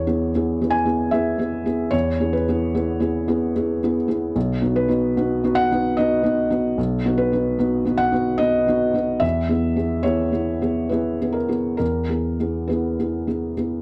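Neoclassical minimalist piano in 3/4 with a rubato feel around 66-75 BPM, this hopeful, tender excerpt features a solo felt-muted upright piano, its thick-felt tone soft, mellow and intimate with audible action noise, sitting up front in a dark production with light reverb as the harmony moves from E to B at 4.4 seconds and back to E at 9.2 seconds.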